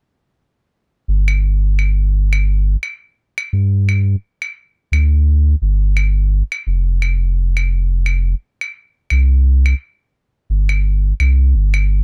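This delicate, playful folktronica excerpt moves with a light sixteenth-note swing. A deep, round sine sub bass enters at 1.1 seconds, dark and sustained with a fast attack, sitting up front with tube saturation and a filter sweep running through it. Acoustic claves, played with brushes in a studio room, join at 1.3 seconds, all set in a dry sound.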